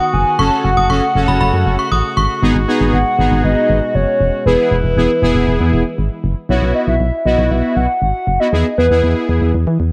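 A hollow, woody clarinet-like synth lead with chorus and delay carries the melody from the start of this nostalgic, wistful pop passage, joined briefly by an inharmonic, ringing FM synth chime that stops at 2.3 s and by a clear brass ensemble holding sustained chords until 6.5 s, while a punchy, round FM bass sits up front beneath fat, detuned analog synth brass accompaniment, all within a light digital ambience.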